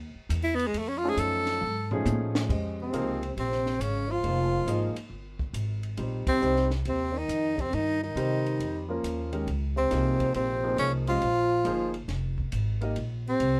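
Searching and intense, this modal jazz passage, cut from a longer piece, swings its eighths at 138 BPM in 4/4 and sits in Bb dorian. A warm, close-miked tenor saxophone with light vibrato leads up front, taking a brief solo at the opening over an F7alt chord before a drum fill at 1.6 seconds carries the band into a Bbm9 groove that moves to Cm/Bb and back. A woody pizzicato upright bass on steel strings sits prominently underneath, while a compact cocktail kit in a small room adds a dark, smooth ride and hi-hat, a high-tuned snare, a punchy kick, toms and crash. A grand piano with a natural tone supplies accompaniment, and from 2.8 seconds a breathy trombone with mellow vibrato and scooped notes adds a second line from the background. The full band hits a shared accent at 6.2 seconds, and light reverb gives the group a touch of space.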